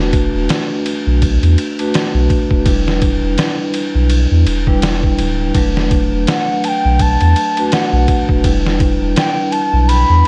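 Smoky and dark, this trip hop excerpt at 83 BPM in E minor sways on a swung groove from a gritty, compressed sampler-style drum kit with a thumpy kick and medium-tuned snare, while a round, deep sine sub bass anchors the low end and an up-front vibraphone rings with tremolo over chords moving between Bm7/E and Em7, until a pure, mellow wooden flute enters at 6.3 seconds with vibrato and tape echo, all under light reverb and the warbling pitch drift of worn cassette tape.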